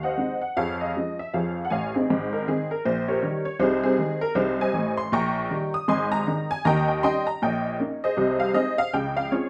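A detuned, jangly honky-tonk upright piano with a woody, vintage character sits up front and plays alone throughout this playful, swinging stride jazz excerpt at 158 BPM in 4/4, with a 62% swing on the eighths, tuned to A4 = 437 Hz and settling into Ab major from 5.1 s as it moves through chords like Ab7/Eb, Db/F, Eb7/Bb and a closing Dbmaj7 inside a moderate club reverb.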